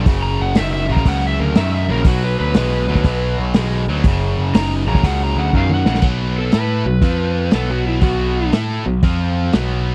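A dry, close 1970s-style studio sound frames this heavy, smoky blues rock and southern rock power-trio excerpt, played with a swung feel. A bright, double-tracked guitar riff, a growling, up-front picked bass and a dark slide guitar all carry overdrive, playing alongside a muffled, lo-fi vintage drum kit with a tight kick, while the slide takes a solo through the first 6.0 seconds. A drum fill at 5.5 seconds leads into a new section, and the slide stops at 8.5 seconds.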